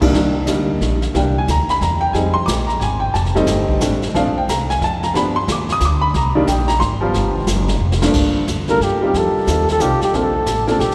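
An intimate baby grand piano with audible action noise opens this smoky, cool swinging jazz waltz alongside a woody pizzicato upright bass and a brushed drum kit with dark cymbals and a boomy kick, all bathed in a cavernous cathedral reverb, until a drum fill at 7.8 seconds sets up a mellow, breathy flugelhorn solo that enters up front at 8.7 seconds with light vibrato and scooped notes.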